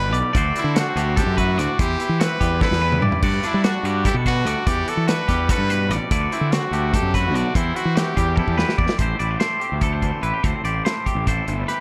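Bright and playful, this math rock and midwest emo excerpt in 7/8 sets a punchy, vibrato-laced solo trumpet melody with tape echo over two twangy, clean electric guitars, also tape-echoed, one accompanying and one playing arpeggios in the background, along with a round, fuzz-overdriven fingered bass and a dark, tight-kicked modern studio drum kit, which adds fills at 2.6 and 8.4 seconds in an echo-heavy mix before the trumpet drops out at 8.8 seconds and the harmony moves to Am7.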